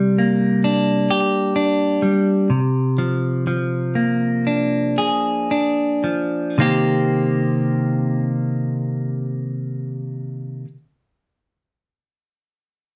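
In a straight 4/4 pulse at 54-67 BPM that slows down over the first 6.6 seconds, this melancholic, cathartic rock passage in C minor, cut from a longer piece and tuned to A4 = 439 Hz, features a clean, compressed, up-front electric guitar picking arpeggios through a slapback echo until 10.7 seconds, moving from Gm/C to Bb7/C before settling on Cm7 at 6.6 seconds, all within the wet ambience of a band playing live in one room.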